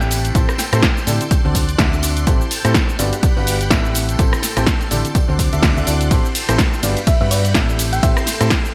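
Piano house with a bittersweet, energetic feel, built on a clear, woody upright piano riff with a slightly detuned, boxy character, over shimmering string-machine violin chords and a round, hollow-body electric bass given tube saturation, all three pumping against the sidechain. A punchy analog drum machine with gated reverb plays hi-hat, ride, rim click, shaker and snare up front, an electronic kick joins at 0.3 seconds, and a very quiet, distant tambourine sits far back. A gentle, tine-like FM synth pluck, treated with chorus, phaser, cassette tape and digital delay, appears briefly in the background at the start and again at 7.1 seconds, while the chords cycle through Am7, D7 and Gmaj7 in a bright 1980s-style digital production.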